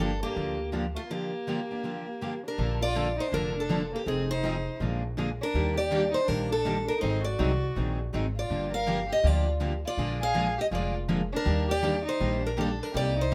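Swung eighth notes in 4/4 drive this bittersweet stretch of jazz manouche string swing, cut from a longer piece, with a break at 1.1 seconds before the second section opens at 2.6 seconds. Up front, a bright, boxy parlour steel-string guitar picks the melody with audible finger squeak, while a close, soft-attacked bowed violin adds an expressive second line with vibrato and portamento, and a woody, thumpy pizzicato upright bass on gut strings anchors the low end. Two picked dreadnought guitars supply accompaniment, one warm and full-bodied, the other fresh-stringed and sitting in the background, under light reverb.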